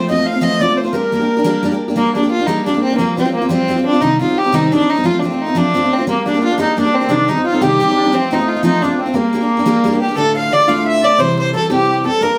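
Celtic folk jig in G minor at 117 BPM in 6/8, driving and wild, taken from a longer piece. A dark, woody solo fiddle carries the melody up front with sul tasto bowing, light vibrato and portamento. A bright, full-bodied jumbo steel-string guitar picks the accompaniment through Gm, Cm and F changes before a new passage on Dm and C at 10.2 seconds, while a reedy, sweet, airy accordion with light tremolo tuning adds a second line that drops out at 1.8 seconds and returns at 6.1 seconds. A wet studio reverb places the group a little further back in the room.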